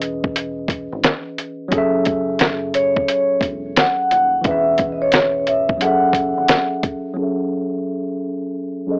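A hazy, nostalgic lo-fi hip hop piece at 88 BPM in F# dorian opens on a worn, slightly out-of-tune tine electric piano, a gritty sampler-style drum kit with a thumpy kick and fat snare, and a dark, round fingered bass sitting in the background, all riding a swung sixteenth-note feel over C#m7/E and F#m7 chords. From 2.8 s a soft-mallet vibraphone carries the melody with a ringing, airy tone, slow motor vibrato and tape echo. The bass drops out at 6.5 s and the drums soon after, leaving the electric piano under a filter sweep from 7.2 s, with the recording carrying a home-cassette, AM-radio character and light reverb.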